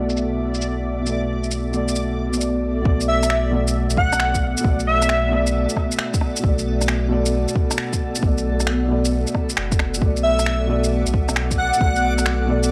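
A muffled felt-muted upright piano opens this ghostly, melancholic future garage excerpt in B minor, a filter sweeping across its dark, intimate tone over a Bm7 chord, with tape echo trailing its notes. Beneath it, a granular cloud pad holds blurred, evolving chords in its own reverb, a round sine sub bass sits up front with transformer saturation, and a reversed, bright texture hovers on a single high note while shaker, rim clicks and finger snaps tick along. At 2.9 seconds a deep electronic kick arrives at 134 BPM in a swung 4/4, and the piano, pad and bass pump against it. From 3.1 seconds an airy, dreamy lead floats briefly between E5 and F#5, coloured by chorus, vibrato, cassette tape character and analog delay, then returns near the close as the reversed texture reappears. The whole recording sounds dry and gritty, with vinyl crackle and a low-pass filter softening its top end.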